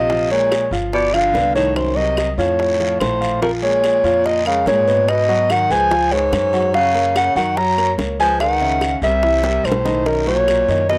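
Afro-Cuban jazz with a sultry, driving mood, this passage cut from a longer piece puts a dark, whispered soprano saxophone up front on the melody, its breathy subtone carrying light vibrato, while a baritone saxophone with scooped notes and vibrato shades a lower second line. A warm grand piano with audible action noise accompanies them, joined by pizzicato upright bass on thumpy gut strings, tight high-tuned bongos played with hard hands, a raspy guiro and woody claves tucked in the background. Moderate studio reverb sits over a dry, gritty sound, a new section begins at 3.4 seconds, and a brief drum fill runs from 9.4 to 10.1 seconds.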